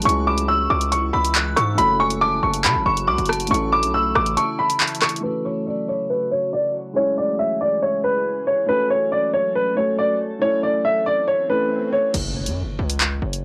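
A warm upright piano carries the melody up front in this cold, ominous drill excerpt, its woody tone coming with audible action noise over a half-time feel at 139 BPM in F# minor. Beneath it, a dark, mellow concert grand piano plays accompaniment, a glassy FM pad holds ethereal sustained chords, and a metallic, warbling FM bell rings a bright second line through the opening section. The distorted 808-style bass hits heavy and aggressive, while the electronic drill kit sits up front with hi-hats, rim clicks, handclaps and crash cymbal. The kick mutes at 4.4 seconds, and soon bass, drums and bell drop out as a filter sweep runs through the middle stretch. A background swell arrives at 11.2 seconds and leads into an impact, and at 12.1 seconds the bass and drums return for a short break as the keys stop. The whole piece carries the softened character of a home cassette recording with light reverb.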